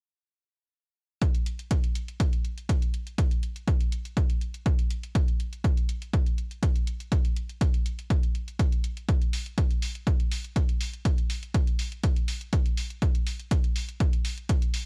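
A straight 4/4 pulse at 122 BPM drives this energetic, bittersweet piano house excerpt, with a punchy analog electronic kick drum sitting up front and a layered electronic hi-hat placed lower in the mix, both entering at 1.2 seconds. The two drums share a tape-warm tone from being re-recorded in a small room, and the kick drops out at 14.6 seconds, just before the hi-hat. The overall sound is dry and gritty, coloured by transformer saturation and cassette tape.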